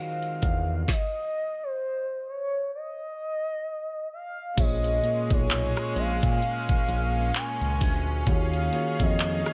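Contemporary R&B at a slow 65 BPM with a swung sixteenth feel, longing and sensual in mood, cut from a longer piece. A gliding portamento lead carries the melody with chorus and digital delay over a mellow tine electric piano and a floating, sul tasto string section, while a trap kit with a knocking kick, woody snare and metallic hats enters at 0.2 seconds and a smooth, nasal synth bass joins at 0.4 seconds. A stop runs from 0.9 to 4.6 seconds, and the dry sound moves through Bbm7 and Ebm11 in the second half.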